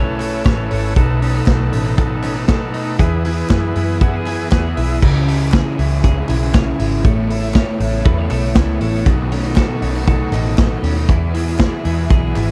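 A straight 4/4 pulse at 118 BPM drives this bright, breezy slice of jangly indie pop in E major, cut from a longer piece. Up front, a vintage acoustic drum kit with a punchy kick, medium-tuned snare and dark cymbals enters at 0.2 seconds alongside very quiet, hollow group handclaps, while a round, foam-muted picked bass holds down the low end. A twangy, compressed twelve-string electric guitar spins arpeggios through a slapback echo, and an overdriven garage guitar adds picked accompaniment beneath it. A buzzy combo organ with heavy vibrato carries the opening chords and plays a fill from 4.0 to 5.0 seconds before it drops out. At 5.0 seconds the music turns to C#m and a clear, focused bowed string section enters with sustained chords in the background, moving through Aadd9 and B7 back home to E. The dark, warm production keeps the sound close and dry, with little reverb.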